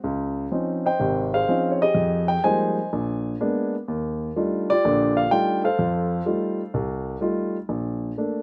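Swung eighths at 126 BPM carry this relaxed solo jazz fragment in Bb major, where a warm, up-front grand piano spans Ab1 to Ab5 through lush chords from Dbmaj9 and Fm11 to Ebmaj9#11 and F9 before settling on Bbmaj7 at 7.7 seconds, all in a light reverb and tuned to A4 = 439 Hz.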